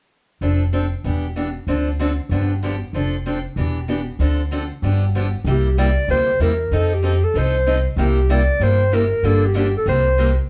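Acoustic string swing in the jazz manouche style at a brisk 191 BPM, this swinging, charming excerpt in C mixolydian opens with a bright, boxy picked parlour guitar accompaniment, finger squeaks and all, over a woody, growly pizzicato upright bass that sits up front, until a close-miked solo clarinet enters at 5.5 seconds with a mellow subtone, vibrato and scooped notes, all set in a moderate studio reverb heard from further back in the room.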